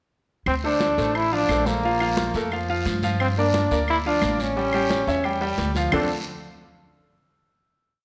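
A woody two-bar clave time line in the background drives this fiery, driving salsa piece at 176 BPM in D minor, with thin-skinned congas mixing slaps and open strokes, a raspy, saturated guiro, and a growly upright bass playing a tumbao that anticipates the chords, while a clear, polished baby grand piano plays montuno in octaves and a bright, forceful trombone sits up front with vibrato and punchy, motif-based song phrases, all within a moderate large studio reverb before settling on a final Dm7 chord at 5.9 seconds.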